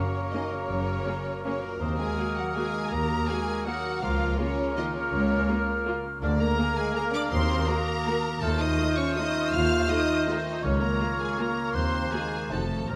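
Set in triple metre with uneven beats and rubato, this bittersweet, dark classical passage, cut from a longer orchestral piece, moves with a breathing pulse. A close, lush violin section carries the melody with expressive vibrato. Behind it sit a second violin line with a soft attack and smooth top, a pure, crisp flute, a distant, roomy oboe and a mellow clarinet. A rich viola section and a bassoon supply the accompaniment, the French horn section holds sustained chords, and a bright concert harp rings out arpeggios. The cello and double bass sections enter at 0.7 seconds to carry the bass, and a very quiet timpani stroke with hard mallets lands at 12.9 seconds. Moderate scoring-stage reverb gives the orchestra a spacious bloom as the harmony settles on a tense F7b9 chord at the close.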